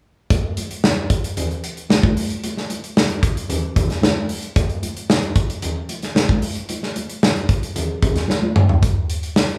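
Glossy and breezy, this short pop excerpt at 113 BPM in a straight 4/4 sets an up-front acoustic studio drum kit, with punchy kick, medium-tuned snare, hi-hat and toms, against distant, ringing medium-tuned congas that stop at 8.5 seconds, as the band plays live in one room under a moderate large-studio reverb and the drums play a fill from 8.3 to 8.8 seconds.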